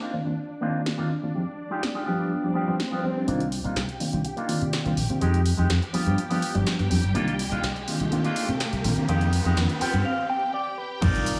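A wet echo-chamber reverb and a small-room ambience frame this groovy, nostalgic slice of filtered disco house, cut from a longer piece and moving at 124 BPM in C minor, with sidechain pumping breathing through most of the parts. A swirling, warbling string machine holds sustained chords through chorus and phaser, sitting beneath a bright, twangy envelope-filtered electric guitar riff, while a reedy electric piano adds accompaniment with a fast tremolo, all of them softened by a low-pass filter and the strings and guitar roughened by 12-bit sampler grit. The chords cycle through Cm11, Fm9 and G7, and a punchy, tape-toned analog drum machine of snare, hi-hat, shaker and crash joins at 0.9 seconds. After a swell, a fingered electric bass enters up front at 3.3 seconds as a build-up begins, carried by a riser and a filter sweep, with a clean electric guitar fill near the end and a short break. 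The passage lands at 11.0 seconds on an impact and a single hit from a punchy electronic kick drum.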